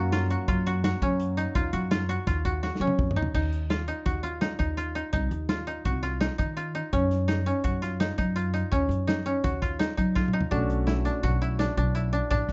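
Driving and tense, this progressive instrumental excerpt moves at 167 BPM in 5/4, with a dry, up-front koto playing fingerpicked arpeggios over a pizzicato upright bass with steel strings and a tight, dark-cymbaled soul drum kit in a small room. A clear, intimate grand piano with audible action noise sits in the background, playing only until 3.3 seconds and returning at 10.5 seconds as the chords move from Gb through Ebmadd9 and Gb5 to Bm7. Drum fills at 2.6 and 10.2 seconds mark the turns, and the light reverb and rolled-off top give the whole a dark, warm sound.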